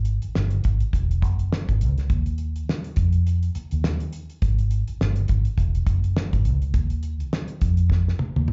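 Heard through a club PA with a touch of room reverb and a dulled top end, this short cut from a longer piece is lush 1970s-style soul at 103 BPM in 4/4, with a gentle 16th-note swing and tuning set to A4 = 438 Hz. A dark, round, foam-muted fingered electric bass sits up front from the start, and a dry, damped acoustic drum kit joins at 0.1 s with a fat snare, tight kick, hi-hat and toms. The mood is smooth and romantic, and the drums close on a fill from 7.9 s to 8.5 s.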